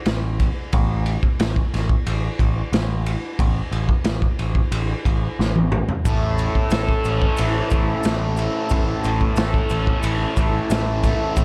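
Psychedelic rock at 90 BPM in A major, hazy and hypnotic, cut from a longer piece, opens with a growling, overdriven picked electric bass and a gritty raw garage drum kit with a punchy kick in a small, pumping room, and after a drum fill at 5.4 seconds a reedy, breathing pedal harmonium holds sustained chords from 6.0 seconds while a thick, double-tracked fuzz guitar riff with phaser enters up front at 6.1 seconds over grainy maracas in the background.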